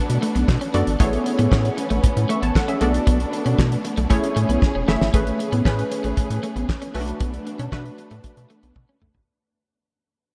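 Early-eighties boogie funk in A major at 116 BPM, this feel-good, danceable excerpt rides a dry, fat-snared 70s drum kit with handclaps and a tight kick, up front beside a rubbery, nasal square-wave bass with a filter pluck and a moving notch. A punchy, detuned polysynth comp with chorus enters at 0.7 seconds, while a slightly broken-up, compressed electric guitar riff sits in the background and a dark, lush string section holds bowed chords with vibrato over Bm7 and Amaj9 changes. The dreamy mix is soaked in a huge ambient reverb with lossy compression artefacts, and a drum fill marks the shift at 5.1 seconds into a fade-out.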